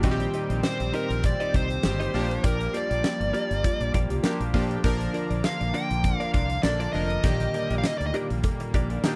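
Uplifting and romantic, this short 1980s-style pop cut in Bb major moves at 100 BPM with a light sixteenth-note swing, as a huge arena drum kit with a fat snare, punchy kick, hi-hat and tambourine drives a round fretless bass, glossy chorused synth keys, a brassy, warbling analog pad and a clean, compressed direct guitar riff, with a buzzing, woody marimba on soft mallets tucked into the background, while a dark, overdriven lead guitar carries the melody up front from 0.6 to 8.1 seconds over chords moving from Cm/Bb through Gm7 and Bb to Ebmaj7/Bb in a dry, close studio sound with light reverb.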